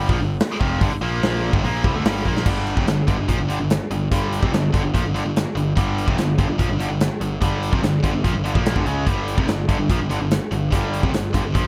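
An up-front acoustic rock kit with a punchy kick, recorded in a big natural room, drives this heavy hard rock fragment, its crash and hi-hat ringing bright over a medium-tuned snare and firing a fill at 2.3 seconds just before the riff shifts into a new section at 2.5 seconds. Two picked electric guitars share the straight 4/4 riff: one high-gain and distorted, the other overdriven, both with a brilliant edge. A picked electric bass, played direct and amped with fuzzy overdrive, anchors the low end, and light reverb gives the whole driving passage a touch of space.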